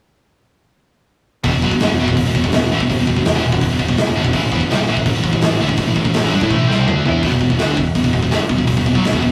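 A straight 4/4 pulse at 166 BPM drives this heavy, epic metal cut in E minor, with all three parts entering together at 1.4 seconds. A bright, double-tracked high-gain guitar riff sits up front over E5 and A5 power chords, joined by a growling, punchy overdriven fingered bass and a big acoustic rock kit with a boomy kick and medium-tuned snare. A drum fill at 6.5 seconds leads into a new section at 7.2 seconds, all captured in a rough rehearsal-room recording with saturation, small-room ambience and light reverb.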